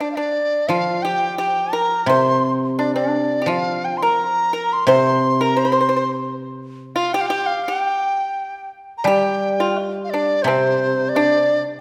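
A large dizi with a buzzing membrane, pure bamboo tone, vibrato and crisp attack carries a tender, wistful melody up front in this rubato Chinese chamber piece in G yu mode at 86 BPM, joined by a dry, percussive fingerpicked pipa on a second line, a ringing, silvery guzheng accompaniment that drops out at 7.0 seconds and returns at 9.0 seconds, and a very quiet, close, bright woodblock entering at 9.0 seconds as a new section begins, the ensemble set in a lush scoring-stage reverb.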